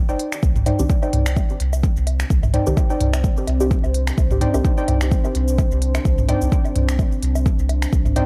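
Hypnotic and hazy, this dub techno excerpt at 128 BPM in C minor, with a 16th-note swing and tuning slightly below standard, rides a single Cmadd9 chord: an up-front deep electronic kick and a layered deep house kit of finger snaps, smooth hi-hat and shaker sent through dub echo anchor a round, soft sub bass pumping under sidechain, while tape-warm electronic toms and woodblock pump alongside, a muted, detuned chord stab drenched in phaser and dub echo sweeps through its filter until 4.7 seconds, a warbling, lo-fi dusty pluck riff with chorus and echo floats above, and from 2.1 seconds a moody ambient pad with reverb and a moving notch settles in, all wrapped in a gritty hardware sound with vinyl crackle.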